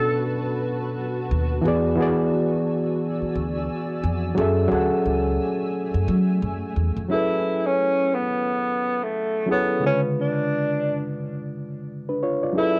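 A reflective, hazy lo-fi hip hop excerpt in F# minor at 88 BPM with a swung 16th feel opens on a reedy, clean electric piano softened by cassette tape and a low-pass filter, a fleeting breathy tenor saxophone note, and a bright, cloudy granular pad with tremolo and its own reverb. At 1.3 seconds a woody, thumpy pizzicato upright bass enters up front, and both bass and pad stop at 7.1 seconds. From there the saxophone returns as a whispered, intimate jazz solo with subtone, vibrato and scooped notes, filtered and touched with analog delay, over electric piano chords moving from F#m11 to C#7b9.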